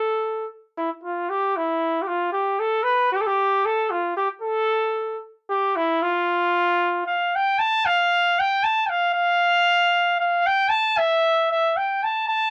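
Mexican folk in a festive, romantic three-beat lilt, this short cut from a longer piece features a lone, punchy, classical-style trumpet sitting up front with a roomy touch of moderate reverb, stating its opening passage and repeating it from 7.6 seconds on a homespun cassette recording.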